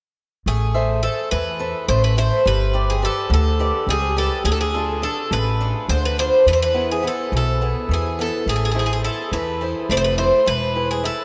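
At 0.5 s a bright, metallic Greek bouzouki with double strings leads a moody, brooding Greek folk melody up front in A harmonic minor, joined from the start by a boxy, picked swing-style acoustic guitar accompaniment and a woody, thumpy pizzicato upright bass on gut strings, all moving at 210 BPM in 7/8 through Am, G, Dm and E in a short cut from a longer piece, set in a vast, echoing cathedral reverb.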